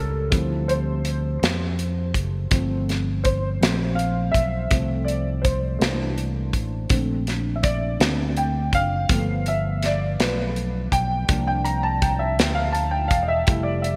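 Soulful and uplifting, this slow gospel excerpt in 6/8 at 55 BPM features a dark, mellow concert grand piano with analog chorus carrying the lead from 0.0 seconds through rich chords like Dm11, Bbmaj9 and C9sus4, over a punchy fingered electric bass and a modern studio drum kit of hi-hat, medium-tuned snare and punchy kick with gated reverb entering at 0.3 seconds, all set in a small room with bright 1980s-style digital production.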